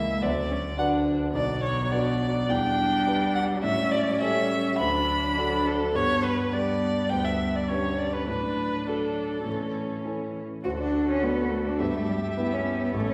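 Bathed in the wet reverb of a scoring stage, this cheerful, lively classical-period movement for piano quartet, cut from a longer piece, sets a rich, focused bowed violin melody up front over a present, polished grand piano accompaniment with long sustain and a smooth, even viola, while a distant, expressive cello carries a second line with vibrato and portamento, the four parts sounding together throughout.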